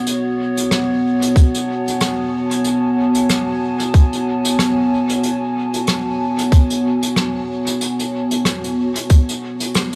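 A loose, gently swung 4/4 groove sets the pace for this hazy, spacious slice of ambient dub, cut from a longer piece. A vintage brush drum kit enters at 0.1 seconds, its hi-hat and rim clicks sitting low in the mix and trailing dub echoes through a pumping small-room sound. From 1.4 seconds a tight, tape-warmed electronic kick sits up front, its produced thump carrying a boxy small-room character. Over it, a warbling, lo-fi pad holds sustained chords from the very start, built from detuned square and triangle tones with a sub octave, a slow attack and a long release. Chorus, built-in reverb and a gritty vintage sampler texture give the pad a dark, nostalgic haze, opening on a B7 chord. The band hits an accent at 9.7 seconds, all within a light, intimate room ambience.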